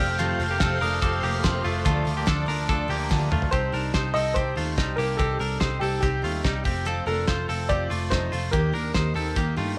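Shimmering twelve-string acoustic guitar, twangy direct-recorded electric guitar arpeggios with tape echo, a round, foam-muted electric bass, a soft rubber-mallet glockenspiel line and a lush, chorused string-machine pad open this restless, wistful jangly indie pop, with a cloth-damped, thuddy drum kit of dark cymbals and fat snare joining at 0.2 seconds. After a drum fill, the glockenspiel and string machine stop at 3.5 seconds and a woody, slightly detuned upright piano takes the melody, its action noise audible as the chords move from F and Dm to Cm, F and Eb. Light reverb lends a studio ambience to this passage cut from a longer piece.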